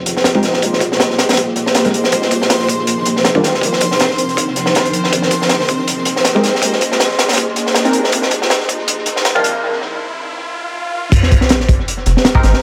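A raw, echo-heavy mix with a small-room spring-reverb ambience frames this atmospheric drum and bass excerpt in F minor, moving at 160 BPM with a light swing on the sixteenths. Up front sits a crunchy, saturated breakbeat kit with a punchy kick, a high-tuned snare, hi-hats and dark crash cymbals, its rolled-off top and tape echo giving it a gritty, warm character. Beneath it a deep, thick sub bass holds sustained notes very quietly, while a reversed, granular texture drifts in the background, dreamy and bright with its own reverb, until 9.6 seconds. A band-passed chord stab with a nasal, wave-folded, ring-modulated tone comes and goes, coated in phaser, lush chorus and dub echo, as a filter sweep on it drives a build-up through Fm11 and Cm11 chords. After a brief break and swell, the drop lands at 11.1 seconds with an impact, and a very quiet electronic riser, swell and sub drop effect runs alongside from 4.1 seconds to the end.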